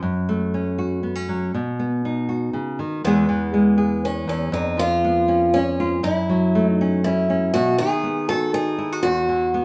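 A boxy, picked melody on an old ladder-braced acoustic guitar enters at 3.0 seconds, sitting up front over a full-bodied, fingerpicked nylon-string guitar whose classical accompaniment, with audible finger squeak, runs from the start. This pastoral, warm acoustic folk piece moves at 120 BPM in a straight 3/4 in E major, tuned slightly low to A4 = 435 Hz, passing through F#m, B, E, C#7/E# and F#m7 before settling on an Esus2. Both guitars are bathed in a wet, large studio reverb in this short passage cut from a longer piece.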